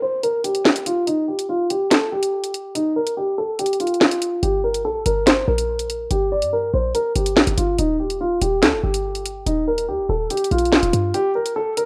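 A rough home-demo mix set in digital ambience carries this tense, ominous drill excerpt at 143 BPM in a half-time feel, opening on a very quiet electronic downlifter and a dark, intimate baby grand piano whose low-pass filter sweeps through most of the clip, its action noise audible. A sharp-snared drill kit with bright hi-hats and handclaps sits up front from 0.2 s. A punchy, tight 808-style bass with a sine body and noise layer arrives at 4.4 s over Gm and then Ebadd9 before dropping out at 11.1 s.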